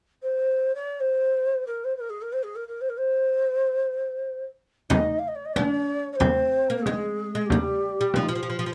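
Longing and melancholic, this short passage from a longer Arabic maqam ensemble piece opens with a low, breathy ney carrying the melody on its own from 0.2 seconds. The end-blown reed cane sits up front with a reedy, warm and distant character, its tongued phrases shaded by vibrato. At 4.9 seconds an acoustic, fretless oud enters on a second line beneath it, its plectrum-plucked double strings sounding woody and bright. A frame drum arrives at the same moment, heard up front with a warm, vintage and band-limited tone. Close, detailed microphones and light reverb keep the small ensemble intimate until the excerpt ends at 8.7 seconds.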